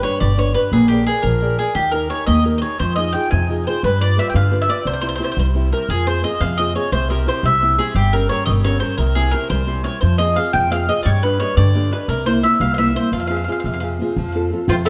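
Romantic and wistful, this Italian folk serenade in 6/8 sets a picked bowl-back mandolin melody, up front with a touch of tape echo on its double strings, over a boxy, fingerpicked nylon-string guitar with audible finger squeaks and a dark, woody pizzicato upright bass, the ensemble sitting in a moderate recital-hall reverb, while a bright second mandolin enters only at 14.7 s, just as this cut from a longer piece ends.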